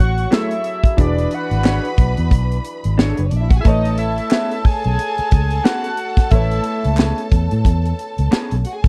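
A dry, close studio recording with small-room ambience gives this short cut of lush 1970s-style soul an intimate, bittersweet and smooth feel, with a lazy sixteenth-note swing in 4/4. Up front, a muted, fingered electric bass sounds round and dark through its amp, while a punchy acoustic drum kit with a medium-tuned snare, kick and hi-hat enters at 0.2 s. The fat analog lead carries the melody from the start, a mellow, sustained sawtooth-and-square voice with a sub octave, ring modulation, a filter sweep, vibrato and chorus, until it drops out at 7.3 s. Beneath it, a lush bowed string section plays a smooth second line and a worn but clear grand piano with deep bass fills in the accompaniment. An electric guitar through a small old amp adds a slightly broken-up, lo-fi picked riff from 0.3 s, joined by very quiet, crisp group handclaps. The harmony moves from F#m9 to E13 and settles on Amaj9.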